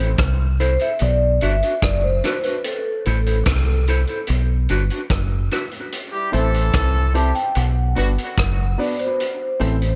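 Deep and meditative, this dub reggae excerpt in A dorian moves at a straight, unhurried 73 BPM over a round, up-front fingered bass and a punchy vintage kit of kick, hi-hat and rim click, while a dark, clean electric guitar with tremolo and dub echo accompanies until 5.6 seconds, a ringing vibraphone with slow motor vibrato carries the melody from 0.6 seconds, and a distant, tight horn section and a worn grand piano with audible action noise add echoed second-line phrases and stabs from around 6.1 seconds, all over chords alternating between Am and Bm in a small, lightly reverberant room.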